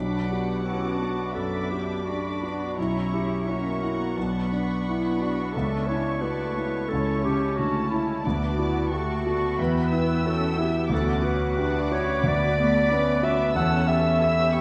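A passionate, brooding romantic movement for piano and orchestra begins with its full ensemble at once. A concert grand sits up front and carries the melody with an intimate, natural tone, deep bass and audible action noise. High above it, a muted violin section shares the melody con sordino, veiled and dark with light vibrato. A second muted violin section and a clear, soft-attacked solo clarinet trace a second line, while distant violas supply accompaniment in the background and a muted cello section holds the bass with a soft attack and smooth top. The phrasing is rubato with uneven beats in 4/4, and the harmony moves to C#m7b5/E at 13.6 seconds. A moderate scoring-stage reverb surrounds this 14.6-second fragment of a longer piece.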